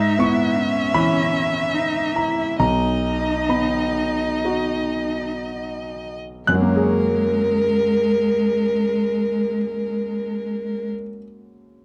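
A dark, warm production with moderate studio reverb frames this intimate, hopeful neoclassical fragment for piano and strings, cut from a longer piece, which moves with a rubato feel and slows through its first 6.5 seconds. Up front, a violin carries the melody with vibrato, soft attacks, portamento and expressive bowing, while a rich, more distant cello sings a second line beneath it with its own vibrato and gliding portamento. A polished concert grand with deep bass, short sustain and a present tone supplies the accompaniment and rings on alone after the strings stop at 10.9 seconds.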